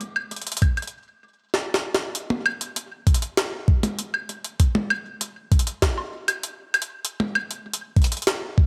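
A pitched-up, sampler-style jungle drum kit opens this short IDM fragment, its hi-hat, high-tuned snare, toms and woodblock sounding gritty, compressed and up front. At 0.6 seconds an electronic kick drum joins: thumpy, tape-warm and sitting louder than the kit. A drum fill arrives at 1.5 seconds and leads into the longer second section, where the two percussion parts carry on together at a steady, straight 98 BPM in 4/4. Both parts carry the character of sounds re-recorded in a large room, with light reverb around them, and the mood feels playful yet wistful. The kit drops out at 8.4 seconds, leaving the kick alone as the cut-off fragment ends.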